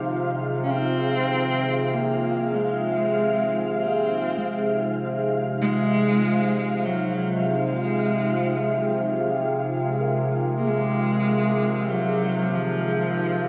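Desolate and cavernous, this dark ambient drone drifts at 48 BPM in F minor, holding on a single Fm chord throughout a 13.5-second stretch cut from a longer piece. An up-front drone with moving, resonant overtones sits beneath a deep, detuned analog pad with chorus, a flickering, grainy texture high above, and a very quiet quartz singing bowl ringing out soft, mellow arpeggios. From 0.6 seconds a rich, expressive cello carries the melody up front, bowed with vibrato and portamento through an analog delay, all set in a dreamy mix soaked in plate reverb.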